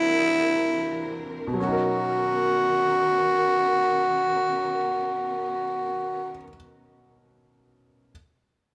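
In free time, with the pulse slowing over the first 1.6 seconds, this tender, romantic jazz ballad in B major drifts along as a short fragment cut from a longer piece. A growling tenor saxophone carries the melody up front, its breathy, raspy subtone and scooped notes hovering between E4 and F#4. Beneath it, a concert grand piano accompanies with an intimate, natural tone, deep bass and audible action noise, while a symphonic string section holds lush, bowed chords with vibrato and a soft attack. The harmony moves from C9 to Bmaj9 at 1.6 seconds, and a moderate plate reverb lends the space a gentle glow. The saxophone and strings fall away at 6.4 seconds, leaving the piano alone until 8.1 seconds.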